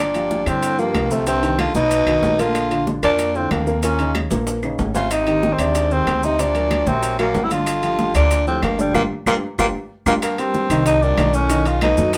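Afro-Cuban jazz, fiery and driving at 188 BPM in G minor, puts a raspy, growling tenor saxophone up front on the melody over a bright baritone saxophone second line, woody pizzicato upright bass and a slightly detuned upright piano, while high-tuned congas, very quiet low-tuned bongos, saturated ringing timbales, grainy maracas and vintage claves fill out the percussion, with drum fills at 4.3 and 9.7 seconds and a band accent from 8.9 seconds, all in a moderately reverberant room.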